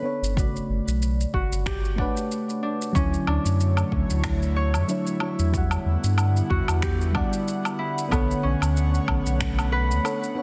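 Sunset chillout at 93 BPM in 4/4, with a gentle 16th-note swing and a relaxed, blissful mood, heard as a short cut from a longer piece. A mellow FM electric piano carries the accompaniment, soft and round with a dark edge, colored by chorus, phaser and delay, while a fingerpicked Celtic harp rings out arpeggios through its own delay. Underneath, a deep, round sine sub bass sits up front, joined by a deep electronic kick and a layered kit of electronic shaker, finger snaps and woodblock with a tape-warm character and soft clipping on the snare. At 2.9 seconds an airy, breathy pad enters with slow-attack sustained chords, detuned and ring-modulated under chorus. The harmony moves from Gmaj9#11 through Dmaj9 and Em9 before returning to Gmaj9#11, all set in light reverb with a dense, heavily limited modern master.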